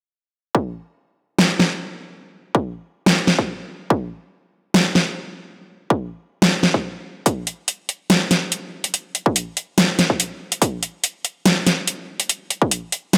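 Heavy wobble dubstep at 143 BPM in 4/4, this short excerpt carries a half-time feel with a light swing on the sixteenths, and its mood is chaotic and menacing. An electronic kick drum opens at 0.5 s, punchy and layered, sitting up front with a high-pass filter shaping its tone. At 1.4 s a dubstep drum kit joins, bringing a huge snare and metallic hi-hats that sit just as far forward and a touch louder than the kick. Both drum parts share a tape-warm, produced character, and a moderate, lush hall reverb of about 2.0 s gives them a sense of space. The kick stops at 12.7 s, and the kit plays on alone until the cut at 13.2 s.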